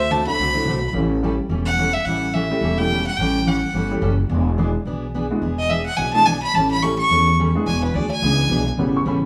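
Western swing country at a brisk 214 BPM in A mixolydian, this swinging, down-home passage from a longer piece features a clear, earthy bowed fiddle soloing up front over a thumpy, woody pizzicato upright bass, a dark, full-bodied picked steel-string acoustic guitar with audible finger squeak, and a warm, open upright piano with short sustain, moving through D7, A7 and E7 chords in a moderate echo-chamber reverb.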